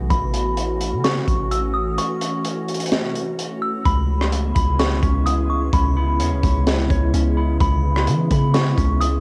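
A glassy FM pad holds sustained chords with a warbling, ethereal shimmer, pumping under a soft, round 808-style bass, while a crystalline synth bell with tremolo and echo carries the melody over a crunchy, saturated breakbeat kit with a punchy kick and high-tuned snare. After a break from 2.0 seconds, an electric guitar through a small old amp enters at 3.9 seconds with slightly broken-up, lo-fi arpeggios colored by delay and plate reverb. This melancholic, spacious half-time cloud-rap excerpt carries a vintage cassette haze.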